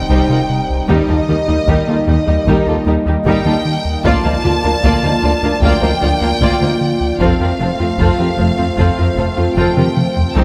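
A close, warm violin section carries an expressive vibrato melody over a dark second violin line with portamento, a clear and intense viola section, a distant, very quiet cello section and a lush double bass section in this brooding, tense hybrid orchestral and electronic film-score excerpt at 76 BPM, while a hollow, flute-like chorused pad sustains Cm, Eb, Bb/D and F chords, a round analog bass plays a deep riff, a tine-like FM synth pluck warbles through chorused, delayed arpeggios, a very quiet electronic sub drop marks the opening impact until 0.9 seconds, when a heavy-sticked, band-limited taiko ensemble enters in the background and closes with a fill from 9.6 seconds, all set in a wet concert-hall reverb.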